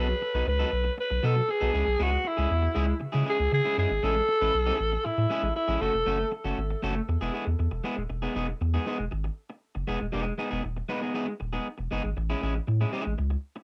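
A growling, raspy alto saxophone carries the pop-style melody through a cassette-tinged analog delay, breathy and full of vibrato, before it drops out at 6.3 s in this celebratory, glamorous disco passage at 118 BPM in E major. Up front alongside it, a picked electric guitar sits at the edge of break-up with its own tape grain, while a deep, round sine sub bass holds the low end as the chords move from B7 through C#m, Amaj7 and F#m. After 8.1 s the guitar and bass carry on over Emaj7 and Amaj7, all captured as a home cassette recording with a moderate booth ambience.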